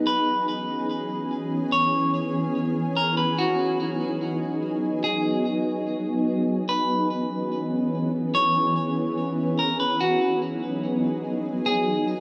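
Hazy and ethereal, this free-time hip hop fragment in G# minor floats on a shimmering ambient pad whose detuned, granular sine chords carry an octave-up sparkle, slow attack, long release, chorus and built-in reverb, moving between C#m7 and G#m7. Up front, a clean electric guitar plays a picked melody through digital delay. A huge, moderate ambient reverb with a 5.0-second tail gives the production a dark, warm haze, and the harmony settles onto G#m7 for a short closing passage at 10.0 seconds.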